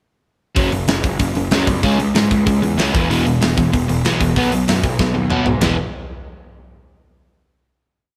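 Punk rock in E major at 190 BPM, a short, rowdy and rebellious whole piece where the full band kicks in together at 0.6 seconds and tears through a fast straight verse over F#5, C#m, E5 and B5 before landing on a final E5 chord at 5.6 seconds. A crunchy, double-tracked overdriven guitar sits up front with palm-muted eighth notes, joined by a growly fuzz bass driving eighth notes and a tight acoustic kit with bright cymbals and a tight kick, which fires off a fill from 5.0 seconds. The band plays live together in a stone room whose moderate reverb gives the drums a big, roomy presence.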